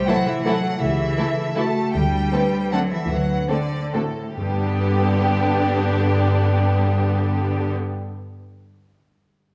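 An elegant, festive orchestral ballroom waltz in 3/4 and G major opens with a vibrato-laden violin melody over mellow French horn chords, with ringing, fingerpicked harp arpeggios in the background, a clear cello bass, a lush second violin line and distant, expressive violas sliding with portamento, while rich double basses join at 0.8 seconds. Moving with rubato at around 131-173 BPM, the tempo slows between 1.4 and 4.4 seconds as the harmony passes from Am/C through A7/C#, D7sus4 and D7 before resolving to G, where a very quiet timpani enters at 4.4 seconds. The violins, cellos and basses sound smooth and even, and the ensemble sits in a wet scoring-stage reverb.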